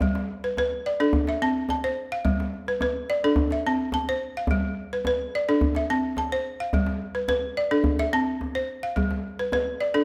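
A woody, buzzing balafon struck with hard rubber mallets spins close-miked arpeggios over a deep, soft-handed djembe from the first second in this hypnotic West African traditional excerpt at 107 BPM in G mixolydian, alternating between G and C chords inside a moderate recital-hall reverb until the djembe stops at 9.7 seconds and the balafon rings on to 10.0.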